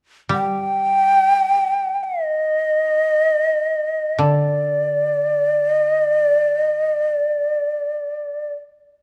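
Austere and calm, this fragment of Japanese chamber music unfolds in free time, with a breathy, expressive end-blown bamboo shakuhachi carrying the close-miked, tongued melody with vibrato up front from 0.3 seconds, while a mellow, woody koto plucked with fingerpicks supplies a quieter, dry low accompaniment until 7.6 seconds, all set in a dark production with a moderate recital-hall reverb.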